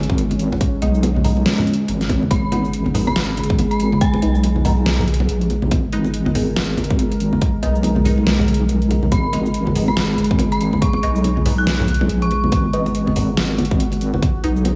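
A half-time 141 BPM groove in 4/4 with a 59% swing on the 16ths drives this dark, brooding deep dubstep excerpt in G# minor, held on a single G#m chord. A punchy, overdriven electronic kick and a dubstep kit of deep snare, metallic hats and shaker, both re-recorded in a small room, sit with low-tuned, thick-skinned congas carrying dub echo in the background, while an up-front wobble bass, sine and square with chorus and tube saturation, anchors the low end. A moody, wave-folded ambient pad with chorus and built-in reverb holds sustained chords alongside nasal, resonant dub chord stabs run through phaser and echo, and an eerie, inharmonic FM bell with tremolo appears at 2.3 seconds and again at 9.1 seconds, all within a dreamy mix soaked in a lush hall reverb.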